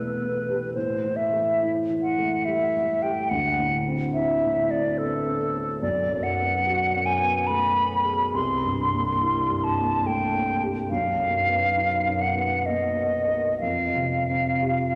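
A hollow concert flute and a baby grand piano begin together, opening a dreamy, luminous impressionist duo in 3/4 at about 71 BPM, played with a flexible rubato and tuned to A4 = 439 Hz. The flute carries the melody between A4 and C6 with a pure, tongued tone and vibrato, sitting up front. Beneath it, the piano supplies the accompaniment from B1 to A#4 with a natural sound and long sustain, also close and present. The harmony moves through Em, A5, Dsus2, B5, C7, Bmaj7 and Fsus2. A wet concert hall reverb with a 2.6-second decay surrounds the pair, and this excerpt, cut from a longer piece, runs to 15.0 seconds.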